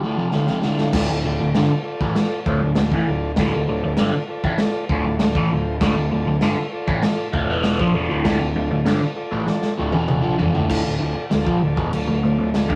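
A rough rehearsal-room recording with tube saturation and a moderate reverb carries this gritty, swaggering garage rock fragment in D minor, moving at 98 BPM in a straight 4/4. A dark, double-tracked overdriven guitar sits up front with a phaser-tinged low riff while a mellow, clean combo organ holds sustained chords above it. The muffled, lo-fi vintage drum kit enters at 0.3 s with a fill, the punchy fuzz bass joins at 0.9 s, and another drum fill leads into a new section at 10.7 s.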